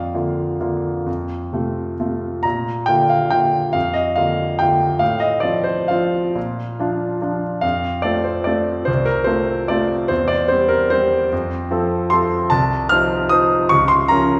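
A clear concert grand piano with a deep bass and a smooth, vintage character carries this wistful, bittersweet classical waltz alone, playing in 3/4 in Bb major with a rubato feel that moves between 119 and 157 BPM. A short opening phrase gives way at 2.4 seconds to a longer passage that moves mostly between Bb and F harmonies before darkening to a Bb minor chord over Db near 13.7 seconds. The piano is heard from further back in a recital hall with a lush reverb, and this brief passage is taken from a longer piece.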